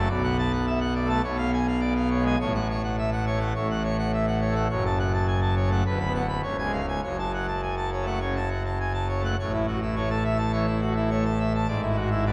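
A brilliant full pipe organ with bright mixtures and a romantic voicing sits up front, playing solo and spanning deep bass notes to high treble in this dramatic, majestic classical toccata excerpt in F# minor at 104 BPM, moving from minor-key harmony into a brighter A major passage at 9.4 seconds, all set in a wet church reverb with a long, resonant decay.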